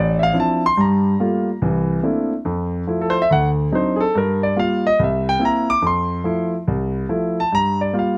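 Close and detailed with a light reverb, this short, sophisticated solo jazz excerpt in F major swings at 142 BPM on a warm, polished concert grand piano, its deep bass and up-front presence spanning A1 to D6 through rich ninth, thirteenth and altered chords that reach Fmaj7 at 5.8 seconds before turning to Gm7.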